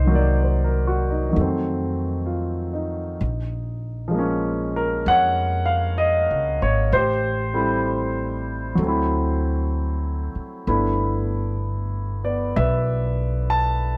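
Jazz ballad at a slow 64 BPM with a gentle swing, late-night and tender in mood, where a polished, present grand piano plays the accompaniment and a woody pizzicato upright bass holds the low end, both up front and closely recorded in a dry, intimate room, moving through rich extended chords that settle on G69 near 10.7 seconds in this fragment of a longer piece.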